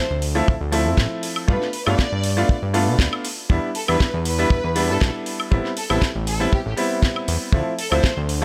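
A dry, gritty hardware recording set in a small room, this short nu-disco excerpt moves at 119 BPM in a straight 4/4, groovy and sensual in D dorian. A bright, brilliant grand piano with a worn, short-sustained tone sits up front from the first moment, carrying the accompaniment through Dm7, G7, Em7 and Am7 before returning to Dm7 at 7.5 seconds. Beneath it, a fat analog bass with a thick, detuned sawtooth sound, fast attack and an evolving filter sweep holds the low end. An electronic, layered house drum kit brings a cracking snare, metallic hi-hats and woodblock, and a dry, tight acoustic kick drum enters at 0.5 seconds and stands loudest in the mix. Over the top, a rich studio violin section plays the bowed, focused melody with vibrato, touched by tape echo.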